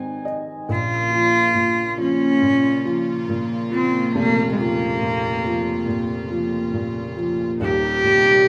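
A nasal, reedy gut-string cello carries the melody up front in this melancholic, reflective folk fragment at 70 BPM, over a boxy, intimate felt-muted upright piano with audible action noise, while a period-style chamber string section with light vibrato enters at 0.7 s to hold sustained chords through Ab, Bbm and Eb6, all set in a wet studio reverb.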